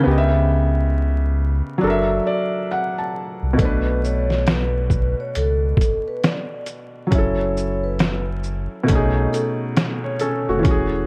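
Light reverb and a digital ambience surround this short lo-fi hip hop passage, with vinyl crackle sitting prominently throughout. A felt-muted upright piano opens it, soft and intimate, its action noise audible as it carries the chords and plays a fill from 1.8 seconds. Beneath it, a deep sub bass doubled at the octave sits up front. At 3.6 seconds a compressed, pitched-down trip hop drum kit arrives with a thumpy kick, a medium-tuned snare, hi-hat and shaker, its muffled sampler character and swung sixteenths giving the groove a lazy lilt. A vibraphone played with soft mallets carries the melody until 9.6 seconds, its metallic ring and slow motor vibrato captured close-miked and dry. The mood is reflective and melancholic, the harmony drifting through rich seventh and extended chords.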